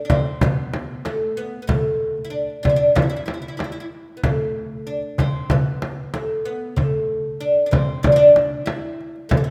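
Longing and melancholic, this short cut from a longer Turkish makam ensemble piece moves at 94 BPM in a straight 4/4. The oud carries the melody from the first moment, sitting up front with a bright, woody tone; it is fretless, plectrum-plucked and strung in doubled courses, and its line stays between A3 and E4. At 0.1 seconds a darbuka with a clay shell and natural skin enters, giving a warm, acoustic pulse heard as if in a small room. A deep, large frame drum joins at the same moment, played with hard hands and placed up front. A moderate scoring-stage reverb with a 1.7-second decay surrounds the ensemble and gives the performance a sense of space.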